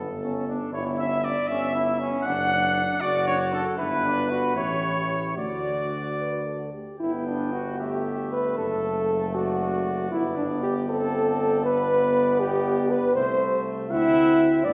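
Classical brass quintet music, noble and triumphant, in a rubato 6/8 at 78 BPM, where a trumpet carries the melody over a flugelhorn second line, a mellow, lightly vibrato French horn that enters at 0.2 s and sits most prominently in the blend, a brilliant but distant trombone, and a present tuba bass, moving from D major to G major at 7.0 s in a reverberant hall sound before this fragment of a longer piece breaks off at 14.7 s.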